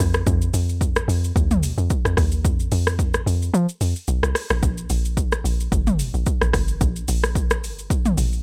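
Deep and soulful, this amapiano excerpt rides a lightly swung 4/4 groove built from just two up-front parts. A round, percussive log drum bass with a fast attack and dark, decaying tone carries the low end from G1 to F3, while a layered electronic deep house kit brings a punchy kick, metallic hats, rim click, shaker and toms, its overdrive adding grit. The sound is dry and close, and the kick drops out briefly from 3.5 to 4.6 seconds before returning.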